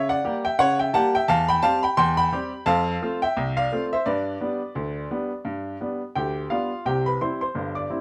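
A dark production with light reverb frames a clear, woody upright piano that sits up front with a short, natural sustain. This is a playful, lively ragtime piece in C major, played by the solo piano across the full 8.0 seconds and cut from a longer performance. It moves at 86 BPM in 2/4, with a gentle swing on the sixteenth notes, and the piano is tuned to A4 = 439 Hz. The playing spans from G1 up to D6. The harmony opens on C#dim7 and moves through C/E, F and G. At 6.9 s a new section begins and settles on C, bringing the passage home to the tonic.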